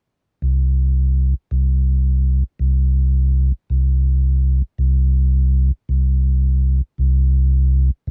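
A dry, close recording in a 1970s studio style frames this short jazz excerpt, cut from a longer piece and carrying a bluesy, soulful mood. A mellow tonewheel organ is the only voice, taking the bass role down around C2 and sitting up front in the mix. Its tone is round, dark and clean, colored by chorus vibrato and a slow rotary speaker. The tempo is 110 BPM in 4/4 with a swung eighth-note feel of 69%. The organ enters at 0.4 seconds and carries on to the close at 8.1 seconds.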